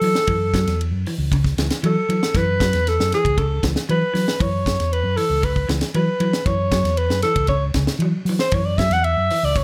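Afrobeat in F# minor at 116 BPM, this driving, hypnotic passage is cut from a longer piece and rests on a single F#m7 chord for its full 9.6 seconds. A breathy alto saxophone takes the solo up front, its mellow tone carrying light vibrato, scooped notes and a smooth top in a pop style, with a slapback echo trailing its lines between G#4 and F#5. Beneath it, a semi-hollow electric guitar sits in the background, picking clean arpeggios low in its range, bathed in spring reverb. A fingered electric bass gives a dark, round, amped bottom end. The tight funk drum kit sounds acoustic and natural in a small room, with a high-tuned snare, a tight kick, hi-hat and ride cymbal, all framed by a light overall reverb.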